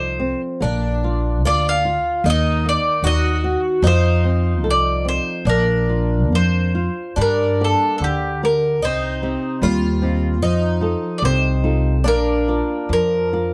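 Rubato phrasing stretches the 2/4 metre of this passionate, mournful fado-style ballad, which moves at roughly 69-77 BPM in a fragment cut from a longer piece. Up front, a woody mandolin sings the melody on its double strings, starting in Bb major before the music turns to G minor at 7.2 s. A picked twelve-string acoustic guitar carries a shimmering, octave-doubled second line with a boxy body, lush chorus, a touch of swing and audible finger squeak, stopping at 13.3 s. A fingerpicked flamenco guitar fills in the accompaniment, with its own finger squeaks. Also up front, a growly, bright upright bass with steel strings is played pizzicato, anchoring the harmony as it moves from F7 and Bb through Ebm, then Gm and Cm, before settling back on Bb. Close, detailed microphones and a moderate small-room reverb keep the sound close and personal.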